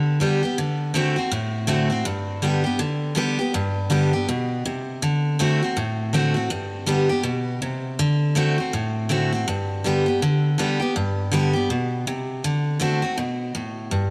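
A bright, full-bodied jumbo steel-string acoustic guitar plays alone and up front for the full 14.1 seconds, picking through G and D7 in G major at a swung 162 BPM in 4/4, giving this short cut from a longer retro, upbeat rock piece a lively bounce set in a moderate plate reverb.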